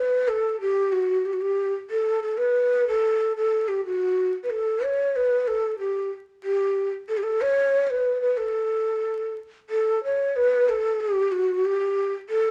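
A breathy, hollow ney plays alone and up front throughout this stately, warm Arabic fragment in a steady 4/4, its mellow, soft-attacked tone and vibrato moving between F#4 and C#5 in a moderate studio reverb under a layer of vinyl crackle.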